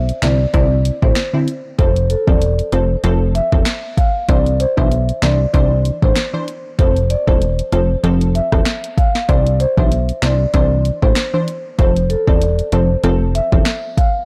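Dancehall at 96 BPM in C major, this bouncy, sunny excerpt from a longer piece swings its sixteenths over a Cadd9 to F vamp. A punchy, funky analog bass with a filter pluck sits up front alongside an electronic afro-pop kit of deep kick, sharp snare, hi-hat, rim click and finger snaps, while a vintage, band-limited marimba carries the melody through tape echo and a crisp, detuned wavetable chord stab fills in mellow accompaniment. The whole recording is blown-out and overdriven, set in a digital ambience.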